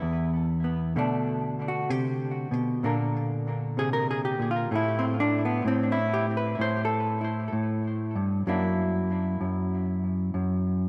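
A dark, clean hollow-body electric jazz guitar sits up front and carries this short solo jazz excerpt on its own, fingered and touched with a delay effect. The mood is smoky and cool, with a slow, swinging 4/4 lilt that keeps the phrasing relaxed. The guitar ranges from a low E2 up to C5, moving through harmonies from Em and Bm7 to A#, A5 and finally F#7b13. A lush hall reverb surrounds the instrument, giving the sound a dreamy, soaked quality. The passage lasts about 10.9 seconds and reads as one section lifted from a longer piece.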